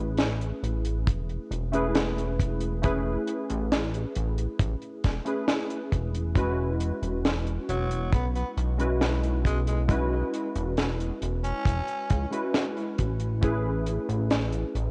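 Warbling, detuned synth keys with ensemble chorus and analog delay open this dreamy, nostalgic vaporwave excerpt at 68 BPM in E major, over a glossy, pulse-width-modulated synth bass and a dry, up-front reggae kit with a high-tuned snare, hi-hat and gated reverb, joined by a tight acoustic kick at 1.1 seconds. The harmony drifts from Amaj9 to E69 at 6.4 seconds and back to Amaj9, and at 7.7 seconds a raspy, growling tenor saxophone, close-miked with vibrato and tape echo, takes a brief solo until 12.3 seconds. The mix sits in a small room with light reverb and a dulled cassette-tape sheen.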